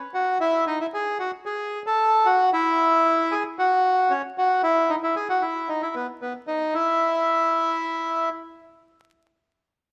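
Rubato, this elegant, playful tango fragment, cut from a longer piece, features a lone bandoneon playing from 0.1 to 8.3 seconds, its reedy, vintage, band-limited tone placed up front in a large studio reverb with a crackle of vinyl.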